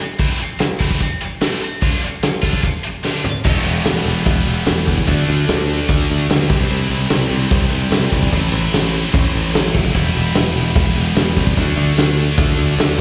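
A double-tracked, high-gain electric guitar riff with slapback echo opens this indie rock excerpt at 148 BPM, backed by a loose, saturated drum kit with a fat snare, punchy kick and rolled-off top, both up front from 0.2 s. After a drum fill at 3.0 s, a bright, growly picked electric bass joins at 3.4 s as the chords move through Em, D and C, giving the cool, bittersweet mood more weight. The sound is that of a live gig heard through the venue's PA with recital-hall reverb.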